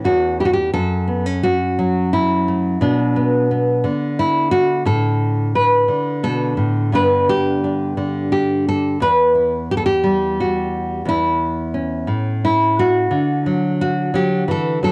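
Folk fingerstyle piece in a straight 3/4, gentle and nostalgic, played by a single nylon-string guitar that is fingerpicked in a classical manner, with bright, fresh-sounding strings sitting up front. Its chords move from A through F#m, Bm, G and Em before settling on D, and the guitar carries the character of cassette tape from a home recording set in a moderate studio reverb. This is a short section of about 15 seconds, cut from a longer piece.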